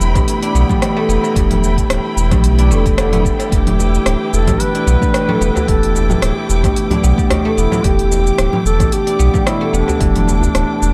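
A round, up-front sub bass anchors this earthy organic downtempo passage at 111 BPM in E minor, resting on an Em7 chord beneath muted, warbling felt-like synth keys, silvery guzheng arpeggios, rich bowed chamber strings and an overdriven organic electronic kit of congas, smooth hats, rim click and shaker, all set in an echo-heavy mix with sidechain pumping, dub echo and shimmer reverb. A deep electronic kick enters at 0.2 seconds, a distant, mellow duduk takes the folk-style solo melody with vibrato and scooped notes from 3.5 seconds, and a tight, cracking djembe joins very quietly at 3.8 seconds.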